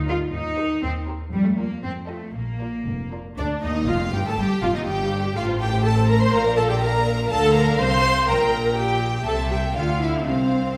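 Set in a brisk 2/4 with an elastic, rubato pulse, this lively, cheerful passage from a quick classical-period movement for string orchestra has a buoyant, good-humored character. A dark, intimate violin section carries the melody with light vibrato and a smooth top, while a second violin section floats above it on a pure second line. Beneath them, an up-front viola section fills in the accompaniment with woody, lush tone and vibrato. Cellos and double basses share the bass, their soft-attack sul tasto bowing giving the low end a gentle, rounded glow. The harmony moves from its opening key into a new tonal area at 7.3 seconds, and the whole ensemble is wrapped in the wet reverb of a recital hall, lending an open, resonant sense of space.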